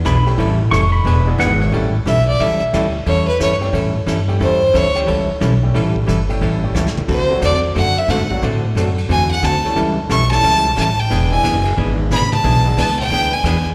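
A clear, bowed fiddle with light vibrato takes the lead from 1.7 seconds after a brief twangy pedal steel opening, riding a cheerful western swing groove of thumpy upright bass, dark hollow-body jazz guitar, a bright upright piano with audible action noise, and a brushed drum kit that adds fills at 6.8 and 12.1 seconds, all heard through a live venue's PA with recital hall reverb.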